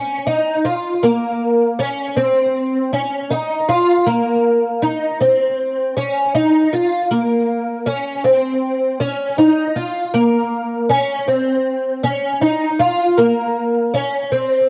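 A moderate room reverb and the soft grain of a home cassette recording frame this ethereal, haunting dream pop fragment in Bb minor at 79 BPM, cut from a longer piece. A picked twelve-string acoustic guitar plays alone and up front for the full 14.7 seconds, its dark, woody tone from old strings shimmering with octave-doubled courses. Ensemble chorus, cassette tape coloring and analog delay deepen its hazy glow across a range from Bb3 to F4.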